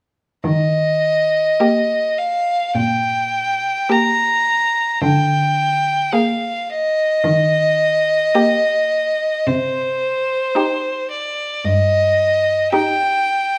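Classical string quartet in a serene, lyrical slow romantic movement taken with rubato, where a clear, intense first violin sings the melody with light vibrato from 0.5 seconds over a warm cello bass line full of expressive vibrato and portamento, joined at 1.6 seconds by a rich second violin gliding expressively through its second line and a focused, smooth-topped viola accompaniment, each part bowed by a single player in a moderate recital-hall reverb.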